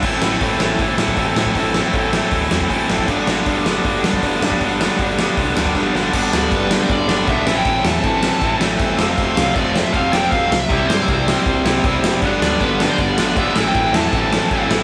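A raw, angry punk rock excerpt at 158 BPM opens on a big rock drum kit with a fat snare and punchy kick up front beside a bright overdriven electric guitar riff, backed by a tight distorted guitar and a growling, round picked bass over Am and G; after a drum fill at 5.8 s, a dark, smooth lead guitar with tape echo enters at 6.3 s, and a very quiet double-tracked high-gain guitar joins at 12.2 s, captured in a rough rehearsal-room recording.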